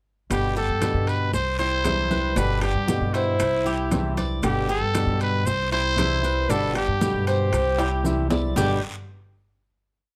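Latin Cuban son in the guajira vein, this short, sunny and danceable piece moves at 116 BPM in a straight 4/4, circling between G and C in G major over a montuno vamp before landing on a final G chord at 8.6 seconds. Up front, a growling trumpet carries the melody with brilliant, gritty hook phrases and light vibrato, while a woody, thumpy upright bass with gut strings plays a syncopated figure. A thumb-plucked flamenco guitar strums with muted slaps, and from 0.6 seconds a bright, metallic Cuban tres picks an arpeggiated guajeo on its doubled strings. The percussion sits farther back: hard-handed congas with slaps and open strokes, low-tuned bongos in steady eighths with a hand bell, ringing timbales playing shell pattern and bell, a raspy guiro and grainy maracas. A drum fill from 7.8 to 8.6 seconds leads into the closing chord, and the sound is close and detailed with a light touch of reverb.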